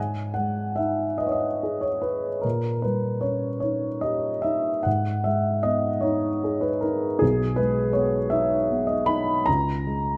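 In a rubato 12/8 that drifts between 48 and 55 BPM in dotted quarters, this wistful, mournful romantic nocturne unfolds in G# minor, cut from a longer classical piece. A solo upright piano with a woody tone and long sustain sits up front, spanning B1 to B5 as the harmony passes from G#m through D#7/A# and back, then to G#m/B and A#m7/C# near 9.5 seconds. Close, detailed microphones capture the instrument against a moderate recital-hall reverb.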